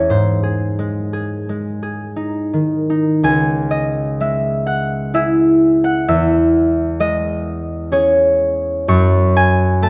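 Serene and graceful, this classical solo harp piece in C# minor moves in an unhurried 3/4 at 53-66 BPM with a rubato feel, lifted from a longer work. The concert harp sits up front with a warm, ringing, fingerpicked tone spanning C#2 to C#6, opening on G# before settling onto C#m at 3.3 s and passing through C#m/E to F#m. A moderate recital hall reverb surrounds the instrument throughout.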